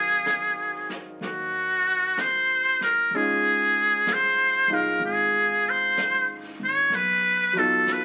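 A smoky, melancholic jazz ballad opens with a muted trumpet carrying the melody up front, its metal mute giving a buzzy, raspy tone with vibrato and scooped notes. Beneath it, a clear concert grand piano plays intimate accompaniment, its deep bass and audible action noise lending a natural presence. An upright bass sits in the background with a woody, thumpy pizzicato sound from gut strings. At 0.3 seconds a vintage brush drum kit joins on brushed snare and hi-hat, its muffled, rolled-off top suggesting a small room. The slow 63 BPM swing moves through rich harmonies from Ab13 to Dbmaj7 and B7#11. The whole excerpt is bathed in a wet club reverb and the crackle of a very old 78 rpm record, cut from a longer piece.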